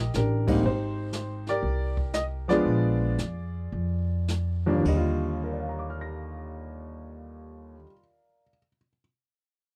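A swung 4/4 pulse at roughly 103 to 121 BPM sets a relaxed, sophisticated tone for this brief jazz piano trio passage in Eb major, cut from a longer piece, and the tempo slows between 0.6 and 4.9 seconds. A woody, up-front upright piano carries the melody across the whole span, ranging from low Eb2 up to a high Bb6, moving through Ebmaj7, Abmaj9 and Bb7b9 before settling on Ebmaj9 at 4.9 seconds. Beneath it, a thumpy pizzicato upright bass with dark gut-string tone holds the low end until 7.8 seconds. A brushed drum kit with dark cymbals, a medium-tuned snare, a boomy kick and a rolled-off top sits mid-forward but a little quieter in the mix, adding hi-hat and crash touches before dropping out at 5.3 seconds. The sound is dry and close, with little reverb, in the manner of a 1970s studio session.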